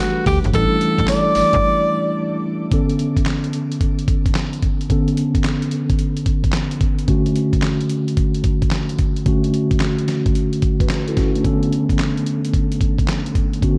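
A dark, warm production with moderate plate reverb frames this bouncy, upbeat R&B excerpt in a new jack swing style, moving at 110 BPM in 4/4 with swung 16ths. A clear, close-miked alto saxophone with vibrato and scooped notes plays a jazz-style solo melody until 2.4 s, while a snappy, metallic FM slap bass appears only from 0.3 to 1.6 s; the sax and a mellow tine electric piano both carry shimmer reverb. After a break at 1.6 s, the electric piano's Bm9 and Dmaj7 chords continue over a gritty, compressed sampler-style kit with thumpy kick, medium-tuned snare, hi-hat, handclaps and tambourine.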